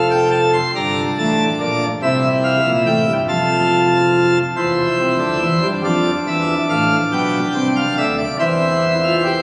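Classical baroque-style three-part fugue in a straight 6/8, elegant and lively, played by a solo pipe organ on a full, brilliant plenum with mixtures sitting up front across a span from E1 to C6, moving from its opening harmony into a new key at 4.6 s within this short cut from a longer piece, all bathed in a cathedral's long, wet reverb and caught on a phone in the room.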